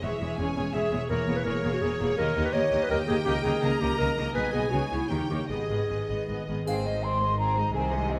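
A moderate recital hall reverb surrounds this fast, dramatic and urgent romantic orchestral passage, cut from a longer piece, in G# minor at 166 BPM in 3/4 with rubato: a smooth violin section carries the melody over a lush second violin line, a close viola section, ringing harp arpeggios in the background, a focused double bass section and a rich cello section, while a mellow solo clarinet plays a second line from 0.4 s to 6.3 s before a hollow, up-front flute takes over at 6.7 s alongside distant, dark French horn chords and a brief triangle.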